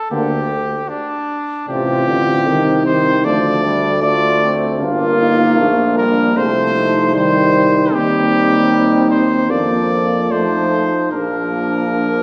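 A clear trumpet opens this stately, noble brass quintet excerpt at 77 BPM in 4/4, carrying the melody up front, and the other four players join at 0.1 seconds. Behind it a mellow, smooth-topped flugelhorn sings a second line, while a warm French horn with light vibrato and a soft attack and a bright trombone, also lightly vibrato, fill in the harmony; underneath, a vintage-toned tuba holds the bass. The harmony moves from G minor through A half-diminished, D minor and C minor to settle on B-flat, all heard from further back in a wet recital hall that gives the classical playing a noble, spacious glow.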